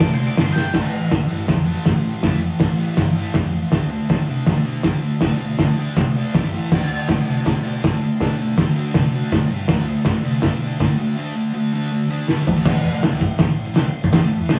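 Rough rehearsal-room cassette sound with moderate studio reverb frames this gritty, swaggering garage rock cut from a longer piece at 161 BPM in A minor, where a dark octave-fuzz lead guitar flashes only in the first 0.7 seconds while an up-front, bright, double-tracked fuzz guitar drives a G5, A5 and D5 riff over a round hollow-body short-scale bass sitting in the background and a cloth-damped, muffled drum kit with a fat snare, tight kick and dark cymbals, capped by a drum fill at 12.3 seconds.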